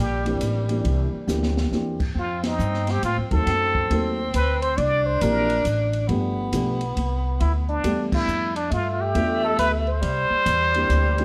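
Lightly reverberant and warm, this swinging small-group jazz excerpt in 3/4 at 137 BPM puts a clear, plunger-muted trumpet with its wah-wah and light vibrato up front on the melody over a distant, subtoned tenor saxophone second line, woody pizzicato upright bass, a dark, boxy upright piano, and a smooth open drum kit with a boomy kick, marked by a drum fill at 1.3 seconds and band accents at 2.4 and 8.1 seconds across C9, F9, F#dim7 and G9 chords.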